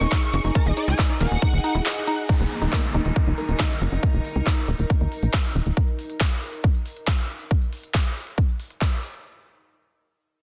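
A dense, heavily limited psychedelic trance excerpt in Eb minor at 138 BPM, hypnotic and psychedelic, opening on a drop where a swarming, bright detuned rave lead with phaser and tape echo cries out over a morphing wavetable pad, a tight, punchy sawtooth sequencer bass and an up-front punchy electronic kick, while a woody wave-folded pluck riff sits in the background and an overdriven big-room kit of crisp hats, claps and ride drives on as filter sweeps and a downlifter enter at 2.3 seconds and the drums carry on alone to 9.2 seconds.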